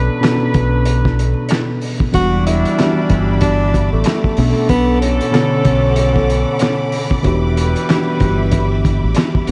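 A mellow, slightly out-of-tune tine electric piano, a round, punchy dub bass and tight, delay-touched horn stabs open this moody, reflective boom-bap excerpt in E minor at 94 BPM, joined at 0.2 seconds by a muffled, gritty cloth-damped drum kit with handclaps, then at 2.1 seconds by a breathy, subtone tenor saxophone melody with scooped notes and delay alongside lush bowed strings, all over Bm7 and Em7 chords in a dreamy, reverb-soaked mix with vinyl crackle.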